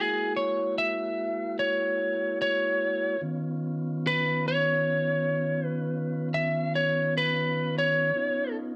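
A lightly driven electric guitar and a mellow tonewheel organ start together in this swaggering, soulful slow blues excerpt in 12/8 at 48 BPM, set in Db mixolydian and tuned to A4 = 441 Hz. The picked, compressed, slightly broken-up guitar solos up front over the organ's soft, flute-like sustained chords, which carry a touch of key click and a slow rotary speaker, moving from Gb9 to Db9 at 3.2 seconds. The band plays live in one room, with a moderate stone-room reverb around the performance.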